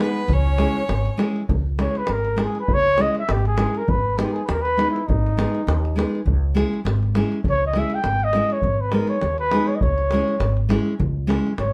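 A swung 2/4 groove at 101 BPM drives this fiery, virtuosic Balkan wedding-band fragment in C# Dorian sharp-four, where a clear, focused bowed fiddle states the melody only until 1.2 seconds before a dark, smooth-topped trumpet with light vibrato takes an up-front classical-style solo from 1.5 seconds over C#m and G#m harmony, supported by a full-bodied fingerpicked nylon-string guitar with audible finger squeak, a woody pizzicato upright bass entering at 0.3 seconds, and a deep davul in a small room, all set in moderate studio reverb with some lossy compression artefacts.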